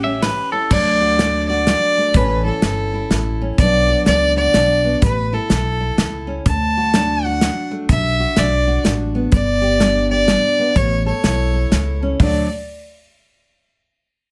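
Honky-tonk and classic country in an easygoing, heartfelt waltz time with a swung lilt, cut from a longer piece. A bright, twangy electric guitar with tape echo sounds over the opening 0.7 seconds before a smooth, focused fiddle with light vibrato takes the melody up front. A picked steel-string acoustic guitar with audible finger squeak plays beneath it, alongside a woody, growly upright bass and an airy, polished drum kit with a punchy kick, all in light reverb.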